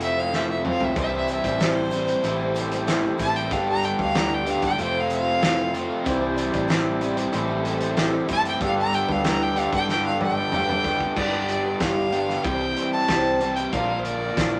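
Nostalgic and warm, this folk rock and heartland rock piece at 94 BPM in 4/4 features a clear, focused fiddle soloing up front with light vibrato until 11.2 seconds, over a double-tracked overdriven electric guitar riff, a bright, shimmering twelve-string acoustic guitar in the background, a round, punchy hollow-body electric bass, and a loose indie drum kit with a fat snare, dark cymbals and brief fills, while a reedy, sweet accordion with light tremolo tuning and a grainy, distant tube shaker play from 1.0 to 11.1 seconds, the whole set in a moderate studio reverb.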